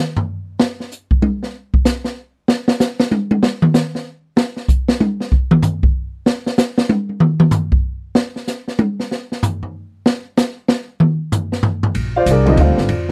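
A drum solo opens this short excerpt of modal jazz, the open acoustic kit moving across hi-hat, kick, ride, snare and toms at a brisk 190 BPM in a swung 3/4, with dark cymbals, a medium-tuned snare and a boomy kick sitting up front in a small room. The mood is open and spiritual, centred on Bb mixolydian. At 11.9 seconds the pizzicato upright bass arrives, woody and steel-strung, on a Bb13 chord, and the concert grand piano follows at 12.2 seconds with a natural tone and deep bass in its accompaniment. Both join the drums close and present for the final moment before the cut at 13.1 seconds. The sound is that of a dry, close 1970s-style studio recording with light reverb.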